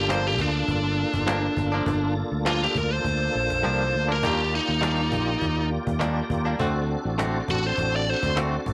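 Smoky and brooding, this straight-eighth soul blues at 102 BPM in G minor sets a biting, overdriven lead guitar melody up front over a full tonewheel organ with slow rotary speaker and chorus vibrato, a round, dark fingered electric bass, twangy direct-recorded clean guitar stabs colored by tremolo and tape echo, and a woody cajon in the background whose kick and snare drop out from 3.6 to 4.2 seconds, as the chords move from Gm7 through Ebmaj7 to D7 under light reverb.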